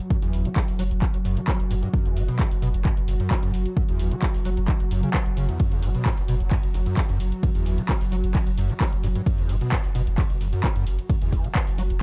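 A tense, swarming drone of detuned, wave-folded, granular tones with its own reverb and a sidechain pump opens this driving, hypnotic excerpt of peak-time techno at 131 BPM on an F#5 chord, joined at 0.1 seconds by a squelchy, gritty acid bass riff with a resonant filter sweep, distortion, chorus, cassette tape colour, analog delay and pumping, an up-front, overdriven punchy kick, and a punchy, overdriven analog drum machine of handclaps, hi-hat and ride cymbal whose hats and cymbals pump, while a deep, thick, saturated, low-pass-filtered sub bass holding F#1 and also pumping arrives at 0.2 seconds, all in a dry but echo-heavy mix.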